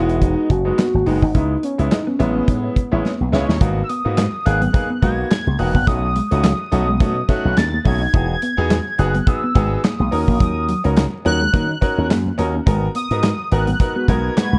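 A swung sixteenth-note groove in 4/4 drives this funky, late-night slice of early-eighties boogie funk. Up front, an acoustic studio drum kit with a tight kick, medium-tuned snare, hi-hat and handclaps sits beside a punchy slap bass whose envelope filter gives it a bright, amped bite, while high-tuned congas played with soft hands murmur very quietly beneath. A velvety, detuned sawtooth synth lead carries the melody with vibrato, chorus and tape echo, supported by a clear, intimate baby grand piano with audible action noise and long sustain, and a clean, fingered electric guitar riff with analog chorus tucked in the background. A round, brassy synth brass line slips in briefly at 2.9 seconds, as a band accent and drum fill lead into the main groove at 3.6 seconds, and returns at 14.0 seconds. The harmony moves from Emaj9 through C#m7 and Amaj9 into a progression of G#m7, B7, Emaj7 and D#m7 that comes back to G#m7, all wrapped in a dark, warm studio ambience.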